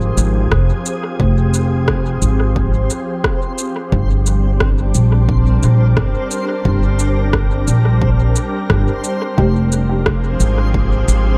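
Ambient dub with a spacious, hazy mood, moving at an unhurried pace with a gentle swing, taken from a longer piece. A woody upright bass, plucked pizzicato and sitting up front, anchors the low end throughout while a soft, organ-like pad holds calm, detuned chords under an ensemble chorus and its own reverb. Drifting above them, a reversed, dreamy texture swells in with a granular, bright sheen, set low in the mix. An overdriven shaker and rim click trailing dub echoes enter at 0.2 seconds, joined at 0.5 seconds by an electronic kick with a punchy, small-room thump. Near the close, at 9.4 seconds, a muted, filtered chord stab plucks once in the background, its chorus and echo carrying it off as the harmony settles onto Fm9, and the overall mix stays dry apart from heavy echo.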